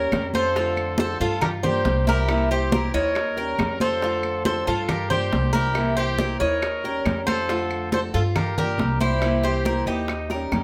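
Latin Cuban son and guajira with a relaxed feel, in which an up-front, metallic tres carries the melody over a second, bright double-strung tres picking arpeggios, a punchy trumpet line with vibrato, fingerpicked nylon-string guitar with audible finger squeak, a dark, thumpy pizzicato upright bass, high-tuned, damped congas, soft-handed background bongos and woody claves, moving through a repeating Eb7–F6–Gm7–C7 progression in a large studio room before a drum fill at 10.3 seconds.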